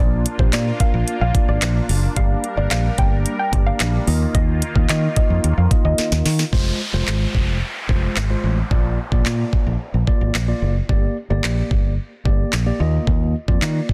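A short dance-pop passage with a bittersweet, energetic mood opens on a soft, round pluck melody in the upper register, coloured by chorus and dub echo, over a mellow tine electric piano, a filtered supersaw swell treated with phaser, and a punchy fingered electric bass. The smooth R&B drum kit joins at 0.3 seconds with a knocking kick, a sharp snare given soft clipping, metallic hi-hats and handclaps, sitting up front alongside the bass. The pluck, piano, pad and bass all pump against the sidechain, giving the opening drop a breathing, driving pulse over chords that move from Bb to Gm to Ebsus2. A drum fill leads into a second section at 6.5 seconds, where the pluck and the evolving, detuned swell have dropped away, and a downlifter sweeps through while the electric piano, bass and drums carry the progression from Fm through Bb and Gm back to Ebsus2. The sound is dry and close, with a dense, heavily limited modern master.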